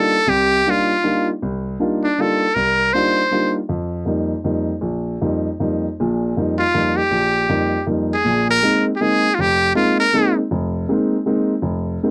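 Jazz waltz in a swung 3/4 at 158 BPM, hypnotic and open, in which a buzzy, thin metal-muted trumpet with light vibrato and a soft attack plays the melody up front, pausing at 3.6 s and returning at 6.6 s, while a warm, natural grand piano accompanies throughout over chords moving from F13sus4 to Eb and then to Bb9sus4 at 8.2 s, all captured in a dry, close 1970s-style studio sound with light reverb.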